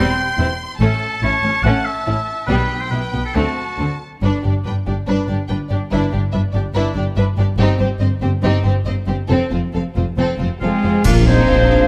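Soaring and adventurous, this heroic film-score cue in straight 4/4 is cut from a longer piece and opens on a lush, vibrato-rich string bed. A smooth upper violin section carries the melody above a second violin line that sounds rich yet distant, while violas supply focused accompaniment and a close cello section joins soft-attack double basses on the bass. A clear, roomy oboe weaves its second line through the opening and returns near the close, and very quiet timpani struck with hard mallets mark brief articulate accents. At 7.6 s bright, dry cymbals, a cymbal swell and concert bass drum enter. From 10.6 s a French horn section adds sustained chords and a distant trumpet delivers stabs, joined by a dark clarinet, a mellow tuba and a hollow small flute group. A full-band accent lands at 11.1 s in a lightly reverberant, detailed close-miked sound.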